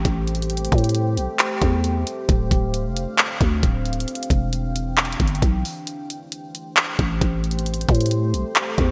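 A half-time trap groove at 134 BPM drives this brooding hip hop excerpt in A minor. An electronic drum kit enters at 0.1 seconds, its knocking kick, bright hi-hats and handclaps sitting up front. Beneath it, a growling 808-style bass with a buzzy edge and a fast, decaying attack rumbles low, also placed prominently in the mix. Behind them, a deep, dark ambient pad of detuned sawtooth unison with a sub octave holds sustained chords, its slow attack and long release softened by chorus and its own reverb. The harmony moves through Am7, Dm7 and Em7, returning to Am7 at 5.9 seconds, where a short break runs until 6.3 seconds. A lush hall reverb and 1980s-style digital production frame the melancholic mood.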